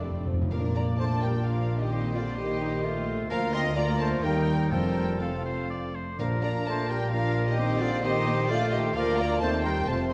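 Spirited and cheerful, this quick classical-period symphony orchestra movement in 3/4 and Bb major runs at 120-132 BPM with a rubato feel, as a dark, woody violin section carries the melody over second lines from a clear oboe, a pure concert flute, a second, softer violin section and a clarinet, while a mellow bassoon and a rich, floating viola section accompany, a French horn section holds sustained chords, double basses and cellos anchor the bass, and hard-mallet timpani sound from 0.0 to 1.2 s and again from 4.7 to 6.9 s, the whole ensemble placed within a wet scoring-stage reverb.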